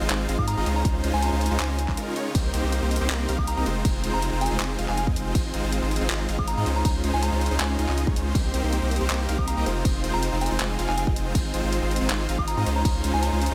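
Future bass at 160 BPM in a half-time feel, bright and lush, with a progression cycling through Ab6, Dbmaj9, Cm7 and Fm7 and a short break at 2.0 seconds. Huge detuned supersaw chords and a thick, saturated sub bass sit up front, both pumping against the sidechain. A layered pop kit of crash, handclaps and warm hi-hats with a small-room character comes in at 0.1 seconds, and a punchy electronic kick joins at 0.4 seconds. A gentle FM bell melody in a high register carries chorus, tape echo and pumping of its own, floating over a very quiet, ethereal granular pad whose octave-up shimmer and built-in reverb add a glistening haze, all set in light reverb.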